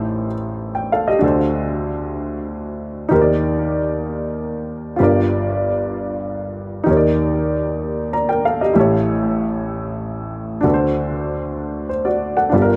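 A worn, intimate baby grand piano plays alone and up front for the full 12.8 seconds of this solemn, fervent gospel fragment, moving at 64 BPM in 6/8 through Am7b5, D7, Ebmaj7, Gm7 and A7, its short-sustained notes and audible key action colored by tape echo within a moderate echo chamber reverb.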